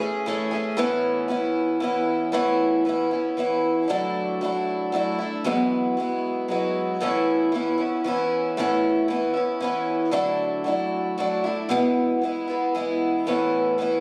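Rock in a straight 3/4, this short, jangly passage cut from a longer piece has an open-road feel, carried entirely by a single picked twelve-string acoustic guitar. Its octave-doubled strings shimmer over a woody, boxy body with the worn tone of old strings, sitting up front in a dry room sound captured on a phone. The harmony circles through Aadd9, Dadd9 and Eadd9, landing on a plain E at 11.7 seconds before returning to Aadd9 at 13.3.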